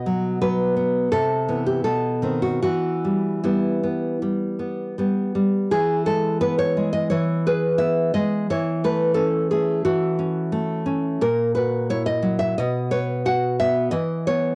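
A bright, up-front nylon-string guitar, fingerpicked in classical style, carries this passionate, melancholic romantic solo in 4/4 at a rubato 75-91 BPM, moving from E minor through Cmaj7 and B7b9 before brightening into E major at 5.7 s, with light reverb, small-room ambience and the character of a home cassette recording, cut from a longer piece.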